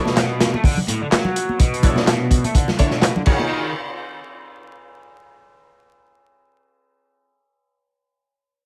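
A swung 126 BPM breakbeat in 4/4 drives this swaggering, raw clip. Its gritty, saturated acoustic kit sits up front with dark cymbals, a tight kick and a medium-tuned snare, joined by layered electronic handclaps and close, dry congas in the background. A bright, double-tracked overdriven electric guitar plays a picked riff through a low-pass filter and delay over Bm11 moving to Ebm11, while from 1.8 s a bold, detuned sawtooth stab in the manner of an orchestra hit cuts in with phaser, delay and its own reverb, ringing on alone after the guitar stops at 3.7 s, all beneath a layer of vinyl crackle and light reverb.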